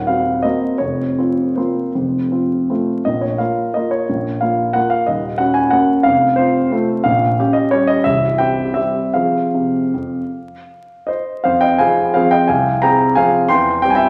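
A polished, up-front grand piano plays alone from the first second in this elegant, wistful classical waltz fragment, moving in a rubato 3/4 between 150 and 191 BPM across a range from C1 to C6, drifting through suspended and half-diminished harmonies before settling into F minor at 7.1 s, all bathed in a wet recital hall reverb with vinyl crackle until the piece is cut at 14.1 s.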